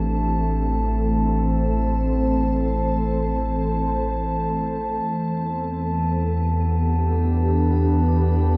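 Ambient music in free time, peaceful and weightless, this short passage cut from a longer piece moves from Am to Em7 at 5.0 seconds inside a wet cathedral reverb with a dark production. A glassy, warbling FM pad holds sustained chords up front with slow attack, long release and ensemble chorus, while a deep, round sine sub bass sits beneath it, mellow and present. High above, a pure, band-limited glass harmonica adds a smooth, vintage shimmer on a single A5 throughout the 8.6 seconds.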